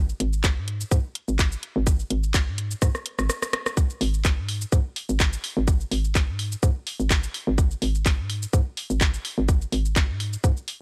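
A lightly swung 16th-note groove in 4/4 drives this sparse, hypnotic minimal techno fragment, cut from a longer piece. A hollow, knocking FM bass starts things off. Its bouncy, punchy notes have a fast attack and a mellow decay, and they pump against the sidechain. A layered garage kit of handclaps, warm hi-hats, rim clicks and shaker enters at 0.1 seconds and rides up front, breaking into a short drum fill between 2.8 and 3.8 seconds. A tight, overdriven electronic kick joins at 0.4 seconds and also sits up front in the mix. The dry, gritty hardware sound leaves the drums feeling close and small-roomed.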